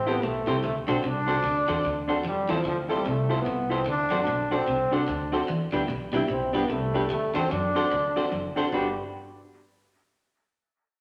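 Cheerful and upbeat, this short excerpt of ska moves with a swung eighth-note feel in 4/4. A clear trombone carries the melody up front as a solo voice, played in a pop style with light vibrato. A woody pizzicato upright bass holds down the low end, while a fingered semi-hollow electric guitar adds hollow-body accompaniment. A worn, slightly detuned upright piano punches out stabs in the background, and a picked, compressed electric guitar with a scooped tone plays a riff through dub echo from 0.2 to 8.5 seconds. The harmony cycles through Am7, D7, Fmaj7 and Em7 before landing on Gmaj7 at 8.7 seconds, all set in a wet, large studio reverb.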